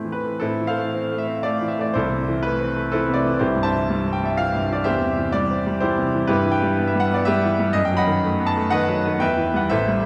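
Stormy yet bittersweet, this romantic classical character piece for solo piano is a brief passage cut from a longer work, running from 0.0 to 10.1 seconds. It moves in 3/4 at about 123 BPM with a flexible rubato feel, opening in A minor and turning toward E minor at 6.3 seconds. The bright grand piano, ranging from A1 to B5, has a brilliant, vintage tone with a long sustain and sits up front. Its harmony passes from Am through C and C/E, then on to Em/G and B7/F# before settling on Em. A wet concert hall reverb with a 2.0-second decay lends the sound the feel of being heard from further back in the room.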